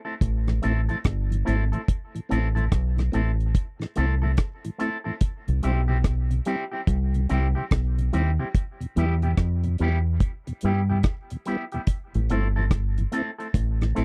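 A slow 72 BPM roots reggae groove in 4/4, with a swung sixteenth-note feel, carries this meditative, hypnotic excerpt in A minor as it moves from Am through C and Em back to Am. Up front from 0.2 seconds, a dark, round fingered dub bass and a dry drum kit with a tight kick, hi-hat and rim click hold the foundation, while a clean, picked electric guitar through an envelope filter, trailed by dub echo, opens the piece at 0.0 seconds. A soft, flute-like tonewheel organ with chorus vibrato, key click and a slow rotary speaker joins at 0.5 seconds, set in a close 1970s-style studio sound with little reverb.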